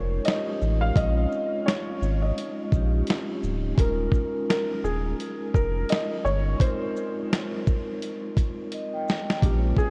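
A felt-muted upright piano carries a mellow, intimate melody over a ringing, vintage vibraphone with slow motor vibrato and cassette-tape coloring, before a gritty, compressed sampler-style drum kit with a thumpy kick and shaker joins at 0.2 seconds, all grounded by a thick, saturated sub bass in this melancholic, nostalgic lo-fi hip hop excerpt at 85 BPM with a swung 4/4 feel, moving through Eb7sus4, Bbm7 and Ab6 inside a dreamy, reverb-soaked mix, with a vibraphone fill at 8.4 seconds and a drum fill at 8.7 seconds.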